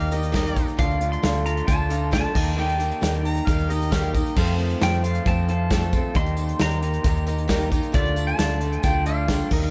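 A warm, jangly stretch of folk rock and heartland rock in a straight four-four, cut from a longer piece and steeped in tape echo with little room reverb. A bright, twangy pedal steel guitar carries the melody with fingerpicks, slide and volume swells, while a clear, punchy harmonica adds a second line of scooped notes until 4.7 seconds. Underneath, a boxy, ladder-braced acoustic guitar is picked with audible finger squeak, and an electric guitar through a small old amp plays a slightly broken-up, lo-fi riff in the background. A dark, round hollow-body bass and a soft brush kit with a punchy kick, medium-tuned snare, hi-hat and crash sit up front. A brilliant, woody upright piano and a jingly, saturated tambourine join very quietly at 0.1 seconds as the chords move among Eb, Dm and F.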